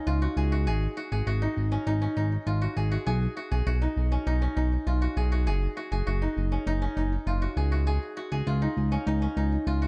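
Close, small-room sound with a softened top end frames this upbeat, nostalgic synth-pop passage at 100 BPM in 4/4, cut from a longer piece, where a dark, sawtooth-and-square synth bass with ring modulation sits up front and sustains low under a woody, fingerpicked koto whose delayed arpeggios sound quieter over chords moving from C# through G#5, B and F#5 back to C#.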